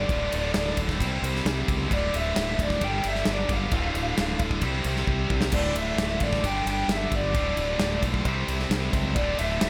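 A big acoustic rock drum kit sits up front in this menacing, heavy hard rock fragment, its punchy kick, medium-tuned snare and bright crash and ride cymbals ringing in a large room from 0.1 seconds, with a short fill at 5.1 seconds. Over it, a bluesy overdriven lead guitar carries the melody with a dark, distorted, picked tone in a high register. Two double-tracked rhythm guitars drive the riff beneath: a tight, crisp distorted part and a heavier high-gain part that sits further back in the mix. A modern fingered electric bass adds a direct, clear low end, while the harmony circles through D minor, C and G with a straight, steady feel. Light reverb rounds out the sound of this section cut from a longer piece.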